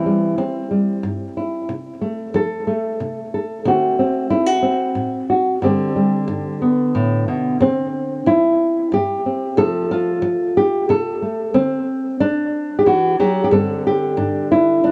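Gentle and warm, this short folk passage is cut from a longer piece and features a solo nylon-string guitar in fingerstyle, moving in an unhurried three-beat lilt with a straight feel. The thumb-plucked, classical tone sits up front in the mix, ranging from G2 to A4, and carries a touch of analog delay. The harmony runs through C, F over C, D7 and a Gsus4 that settles onto G. At 7.6 seconds the second half begins and restates this progression, closing on a bare G5 near 14.2 seconds. A wet studio reverb and the soft grain of cassette tape give the sound an intimate, homespun character, with the instrument tuned to A4 = 444 Hz.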